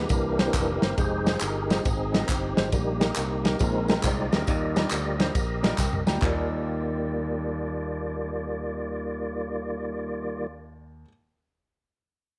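A swung eighth-note groove in 4/4 drives this short, uptempo gospel passage, and the mood is soulful and hopeful. Up front, a fat, clean tonewheel organ carries a solo through the opening 6.2 seconds, its sustained chords coloured by audible key click, a slow rotary speaker and chorus vibrato. A dark, punchy soul drum kit with kick, ride, snare and toms sits close in the mix alongside tambourine and group handclaps from a live room, and both drop out around 6.4 seconds, just after a drum fill. Underneath, a bright, growly fingered electric bass holds the low end, while an intimate grand piano with audible action noise and short sustain plays accompaniment in the background and adds a fill from 5.3 seconds. The harmony moves through rich extended chords such as Fm9, Bb9sus4 and Ebmaj9, and moderate spring reverb with studio ambience surrounds this fragment of a longer piece.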